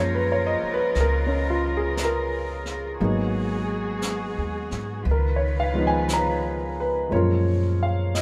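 An up-front concert grand piano accompanies this tender, late-night jazz ballad, its intimate tone rich in deep bass, with the soft sound of its action audible under the chords. Beneath it, a pizzicato upright bass sits close and woody on steel strings, while a bowed cello section holds lush, dark sustained chords with vibrato until 7.1 seconds. A brushed drum kit enters at 0.9 seconds, set distant and roomy in a small space, its rolled-off snare and hi-hat giving the swung eighth notes a gentle pulse at the back of the mix. The harmony moves from F#maj7 through G#m7 and C#9 before settling back on F#maj7 near the close. Light reverb surrounds the ensemble in this brief fragment of a longer piece.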